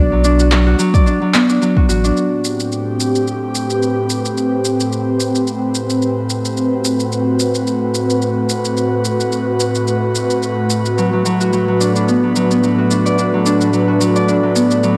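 Organic downtempo in A dorian at 109 BPM, with a gentle 16th-note swing and a hypnotic, earthy mood, heard in a section cut from a longer piece. A bright, ringing Celtic harp opens with fingerpicked arpeggios up front, colored by cassette tape, analog delay and shimmer reverb, over a round, sine-like sub bass with transformer saturation that holds the low end until 2.1 seconds. Electronic shaker and handclaps with a tape-warm, layered feel run from 0.2 seconds to the end, joined briefly by a deep electronic kick drum near the start. At 2.2 seconds the chords move from Bm to Am7 and an airy, breathy pad enters, its detuned sawtooth and triangle tones with a noise layer colored by chorus, sidechain pumping and shimmer reverb. The harp returns at 11.0 seconds over a Bm/A chord, and the whole recording sits in a moderately lush hall with the soft grain of a home cassette recording.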